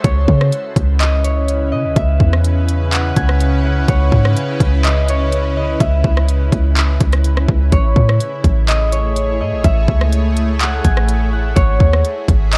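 Dark, dry production frames this ethereal, spacious stretch of half-time cloud-rap, where a ringing, fingerpicked concert harp carries the melody through digital delay over a shimmering, warbling pad with an octave-up layer and chorus, while a deep, boomy 808-style bass and an up-front trap kit of hard-clipped kick, crisp hi-hats, handclaps and rim clicks sit beneath a move from C#m7 to Amaj7.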